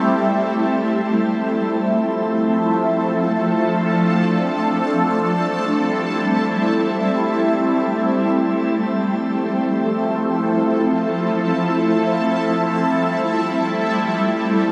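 In free time, this ethereal, spacious hip hop fragment drifts along with a floating pulse rather than a fixed beat, cut from a longer piece and lasting about 14.7 seconds. A single shimmering ambient pad carries everything from the first moment, sitting up front and ranging from F3 to A4. Its triangle-based tone is thickened with unison voices and an octave-up shimmer, with a slow attack, sustained body and long release, plus a granular grain colored by chorus, phaser, digital delay and its own reverb. The harmony alternates between Am7 and Fmaj7, moving to Fmaj7 at 1.0 seconds, back to Am7 at 4.8, to Fmaj7 again at 8.7 and returning to Am7 at 12.6 seconds. A wet shimmer reverb with a 6.5-second tail surrounds the pad in a dark, warm production that feels vast and suspended.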